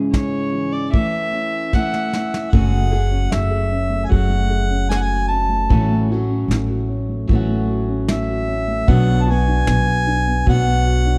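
This wistful, melancholic excerpt of acoustic folk in F# minor at 76 BPM opens with a picked parlour steel-string guitar and a mellow, boxy felt-muted upright piano playing arpeggios, as airy brushed drums with a tight kick keep time and a nasal, reedy bowed fiddle carries a brief melody that ends at 2.3 seconds. A distant, roomy harmonica enters during a drum fill and takes a solo from 2.5 seconds, when a woody pizzicato upright bass joins up front. Light reverb gives the production a dark, warm glow.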